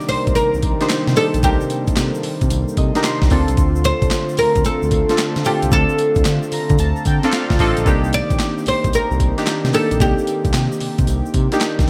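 R&B in a new jack swing style, this short cut from a longer piece feels punchy and confident, with a swung sixteenth-note groove and bright 1980s-style digital production bathed in a moderate plate reverb. A compressed, gritty sampler-style drum kit sits up front with a thumpy kick, medium-tuned snare, handclaps, hi-hat and tambourine, all treated with gated reverb. Underneath, a smooth synth bass blends sawtooth and triangle tones with vibrato, while a detuned sawtooth pad holds sustained chords softly in the background with chorus. Up front, analog keys with a round, evolving pulse-wave sound and filter sweeps carry the accompaniment and add fills around 2.5 seconds and again near 6.3 seconds. A woody, plectrum-plucked fretless oud with deep double strings and delay leads the melody until 10.8 seconds, as a grainy tube shaker adds very quiet, close and dry texture over a harmony that moves from Cm7 to Dm7 and back to Cm7.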